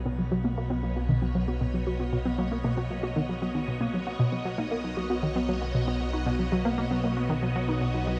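Ambient, sequencer-driven space music in B major at 116 BPM in a straight 4/4, with a cosmic, luminous mood across this short fragment of a longer piece. A fat, saturated analog bass holds a low B under a single Badd9 chord, while a phased string machine fades in over the full 8.2 seconds with swirling, bright sustained chords softened by ensemble chorus. Just after the start, a warbly, dusty pluck spins lo-fi arpeggios roughened by 12-bit sampler grit, chorus and analog delay. A tight sequenced synth drives a detuned sawtooth riff in the same register, its mellow tone also carried by chorus and analog delay. The tight synth riff sits slightly forward in the mix, and a shimmer reverb with a long tail adds a glowing, spacious sense of distance.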